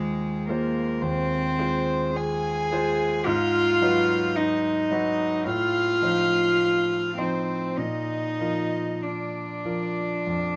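Rubato phrasing in 4/4 shapes this elegiac, melancholic fragment of a slow romantic piano trio movement, tuned to A4 = 439 Hz, where a warm, floating violin played sul tasto carries the melody above a rich, pure-toned cello second line, both bowed with a soft attack, while a clear, polished concert grand with deep bass supplies the accompaniment through Fm7/Eb, Abm7, F7/A and Bb, all caught by close, detailed microphones in a dry room.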